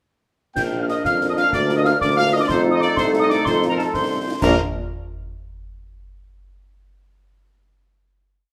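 At 0.6 s, this short, proud and spirited military-style wind band march opens in Bb major at 124 BPM in 6/8: mellow trumpets carry the tune while a crisp, woody piccolo doubles it at the octave. A clear, up-front tuba marks the bass on the beats, and a dark, distant woodwind section holds sustained chords in the background. Very quiet trombones sustain chords, and from 0.7 s soft horns add after-beat chords, with marching snare, dark clash cymbals and bass drum beneath. All of this sits in a roomy studio reverb before a final Bb chord at 4.4 s.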